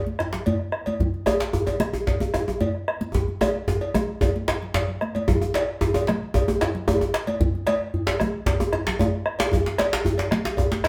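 Damped, high-tuned, thick-skinned congas open this powerful, festive fragment of a longer West African drum ensemble piece at 113 BPM in straight 4/4. A deep, dark bombo, a medium-tuned djembe, a tight, cracking second djembe with metal rattles and hard hands sitting up front, and a metallic cowbell join almost at once, the group playing live in one reverberant room, and a drum fill from 3.1 to 5.3 seconds leads into a new section.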